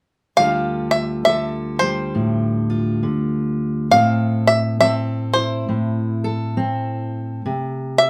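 A bright, twangy bluegrass banjo played with fingerpicks carries the melody up front in this melancholic, reflective acoustic folk passage in D minor at a swung 68 BPM, tuned to A4 = 444 Hz, while a full-bodied fingerpicked dreadnought steel-string guitar supplies accompaniment over chords moving from Dm to Am to C5, the duo playing live together in a small room with a wet reverb.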